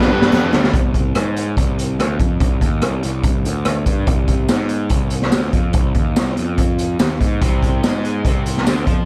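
A raw garage drum kit in a small, pumping room drives a straight 4/4 classic rock groove, with a high-tuned snare, boomy kick, rim clicks, hi-hat and tambourine sounding gritty and up front, and it opens with a fill over a G chord. In that opening moment a dark, wah-tinged lead guitar with plate reverb and tape echo, a crunchy guitar, a tight double-tracked distorted guitar, a scooped distorted guitar, a jingly tambourine, a barely audible parlour acoustic guitar and a lush vintage string machine all sound briefly, then drop away by 0.8 seconds. From there the brooding, driving feel rests on the drums and a growly, fuzzed bass until the distorted guitar riff returns at 7.4 seconds and plays to the cut at 9.1 seconds.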